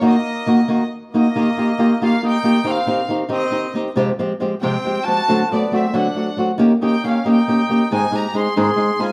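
A stone room's reverb, with a decay of 1.2 seconds, surrounds this recording of a band playing live together, cut from a longer piece. It is a romantic, festive mariachi tune in Mexican folk style, moving in 6/8 at 92 beats per minute in E-flat major. An acoustic flamenco guitar sits up front with a warm, fingerpicked accompaniment, finger squeaks audible along the strings. Above it, a chamber violin section carries the melody in a bowed ensemble tone that is clear and biting yet earthy, with a smooth top. A mellow trumpet with a vintage, classical-style voice plays a second line beneath the violins. The harmony opens on E-flat minor, and a new section begins at 1.3 seconds, moving through chords such as F minor add nine and D7 before landing on A-flat at 7.9 seconds.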